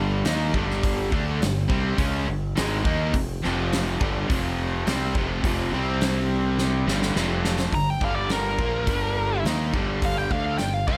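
A high-gain lead guitar cuts in at 7.7 seconds with a distorted, up-front solo spiced with slapback echo, capping a driving, aggressive hard rock excerpt in G minor at 104 BPM. Beneath it, a cranked stack guitar and a biting overdriven guitar, both picked and double-tracked, churn out the riff over a growling, punchy fingered bass, moving from Gm through F5 and C5 before returning to Gm. A huge arena drum kit with a fat snare and punchy kick drives the straight 4/4 feel and throws in a fill from 6.6 to 7.7 seconds, all set in light reverb with small room ambience.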